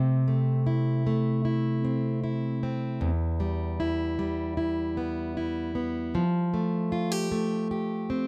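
In a straight, unhurried 4/4, this short, wistful and reflective pop excerpt features a solo fingerpicked plugged-in steel-string acoustic guitar with a full-bodied jumbo tone, placed up front with close, detailed microphones and light reverb, as it moves from Am/C to Em and then Fadd9.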